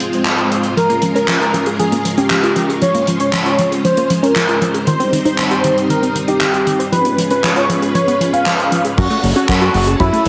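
Bittersweet and danceable, this short italo disco excerpt sets a lush string machine and a dry, damped 70s drum kit with handclaps against a thick, nasal unison lead and punchy, detuned plucked arpeggios from 0.8 s, moving through Fm, Bbm7, Cm and Db7 before a glossy chorused synth bass and tight kick arrive at 9.0 s on F#madd9, all wrapped in plate reverb and a heavily compressed radio sound.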